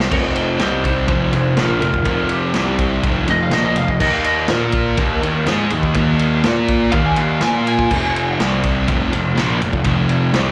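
An electric slide guitar carries the melody from the opening moment to 8.4 seconds. Its compressed, slightly broken-up tone is played with fingerpicks and tinged with slapback echo. Beneath it, a thick, double-tracked fuzz guitar grinds out a dark, distorted riff, also touched by slapback echo, while a growly, bright fuzz bass adds overdriven weight. A vintage acoustic kit with a punchy kick, medium-tuned snare and dark, rolled-off cymbals drives the straight 4/4 feel at 123 BPM. This raw, menacing garage rock passage sits in F minor, cycling through power chords on F, C, Eb and Bb with a brief turn to F minor near 7.9 seconds. Cut from a longer piece, it sounds like a live club gig heard through the venue's PA, with light room reverb around the band.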